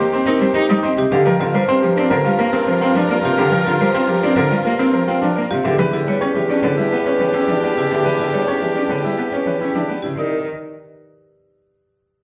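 A rich, up-front bowed cello with vibrato and portamento underpins this urgent, hypnotic fragment of minimalist classical pattern music, joined by clear baby grand piano arpeggios with audible action noise, a woody marimba melody on rosewood bars in the background, a present oboe second line, a lush symphonic string section holding sustained chords behind, and a mellow, vintage-toned bassoon bass, set in a wet, large studio reverb heard from further back in the room as the harmony moves from Eb through Gm7 and Em7 to Cm at 10.2 seconds.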